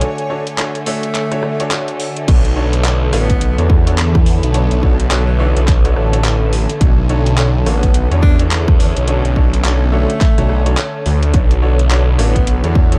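Playful and swaggering, this swung glitch hop excerpt at 106 BPM in B dorian sets a breathy, subtone tenor saxophone melody with delay (entering at 0.9 seconds) over lush bowed strings, an intimate grand piano stabbing with delay and audible action noise, a nostalgic, warbling lo-fi pad with chorus, and a pop kit of metallic hats, handclaps, rim clicks and crash, with a thick, swirling phased saw bass and a punchy, up-front electronic kick joining at 2.3 seconds, all within a dark, small-room production where the strings, piano and pad pump against the sidechain.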